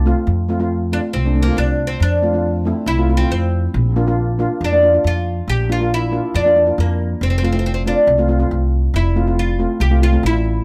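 Calypso with a carefree, festive air: a dark, pizzicato upright bass opens at 0.0 s, a shimmering, mellow steel pan joins at 0.1 s, and a bright, woody, plectrum-plucked fretless oud carries the solo melody from 0.9 s over F, Bb and Fmaj7 chords, all in a moderate studio reverb.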